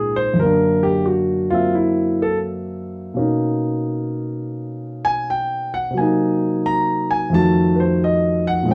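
Relaxed and warm, this brief solo jazz excerpt features a dark, mellow concert grand piano with deep bass and a natural, up-front tone, swinging loosely with a rubato feel in 4/4 through altered and extended chords such as Gbaug7, Bmaj9, Cm7b5 and F7b9, all set in a wet studio ambience heard from further back in the room.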